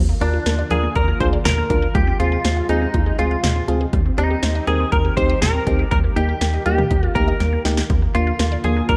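Synth-pop at 121 BPM in Eb major, wistful yet upbeat, where a bright, twangy clean electric guitar carries the melody through ensemble chorus and tape echo over a glassy FM electric piano, a rubbery square bass and a punchy, dry analog drum machine with cowbell and toms that plays a fill at 7.4 seconds, while a shimmering pulse-width pad and a squelchy blip pluck arpeggiating through phaser and tape echo sit in the background of a rough home-demo mix with light digital reverb, moving through Bb, Fm, Cm/Eb and Eb before returning to Bb.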